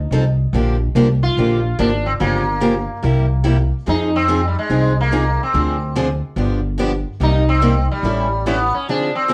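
A swung 4/4 pulse at 144 BPM drives this short, swinging cut of acoustic string swing in the jazz manouche style, in C minor, moving through a minor-key progression that reaches Cm7 at 7.2 seconds before turning to A7. An up-front sitar carries the virtuosic melody with a buzzing, shimmering tone from its sympathetic strings, while a woody, thumpy pizzicato upright bass on gut strings sits forward and stops at 8.7 seconds. Two bright, boxy parlour steel-string guitars pick the accompaniment, one with fresh strings and audible finger squeak, the other tucked in the background, all heard through moderate studio reverb and a worn, warbling cassette-tape pitch drift.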